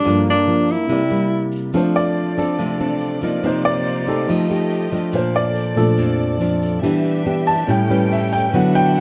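A straight 4/4 bossa nova groove at 142 BPM drives this sunny, breezy passage cut from a longer piece: a punchy, vibrato-rich alto saxophone up front and a raspy, growling trombone in the background both play until 1.5 seconds, while thumb-plucked nylon-string guitar with finger squeak, a worn, deep-bassed grand piano that solos from 1.7 seconds, and a grainy, distant tube shaker carry on throughout, and a lush bowed violin section adds sustained chords from 1.8 seconds over changes such as Gm7, C7, F6 and Bbmaj7, captured with close, detailed microphones in light reverb.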